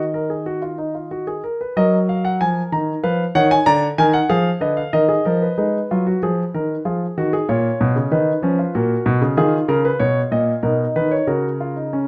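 Contemplative and serious, this short passage, cut from a longer piece, is a baroque-style three-part fugue in E-flat minor for solo concert grand piano, moving at 94 BPM in a straight 3/4. The warm piano sits up front with a deep bass, spanning Bb2 to Bb5 over 12.1 seconds. Harmonies run from Ebm through Fm7b5 and Bb7/D to a closing C#sus4, all carried by a moderate stone-room reverb.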